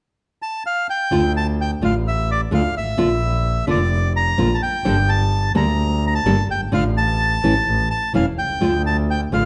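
A tense, dramatic tango fragment cut from a longer piece, moving with a rubato feel in 4/4 and set in a moderately large studio reverb. The bandoneon carries the melody from 0.4 seconds, its reedy, close-miked tone sitting dry and full at the front of the picture. At 1.1 seconds a fingerpicked nylon-string guitar joins as accompaniment, full-bodied and deep in a classical manner, with a touch of finger squeak audible. At the same moment a single bowed double bass enters, clear and earthy with a light vibrato, sounding distant in character yet placed up front. The harmony travels from D minor through B-flat, G minor with an added ninth and D minor over A, touching a bare A fifth before settling back on D minor as the fragment closes.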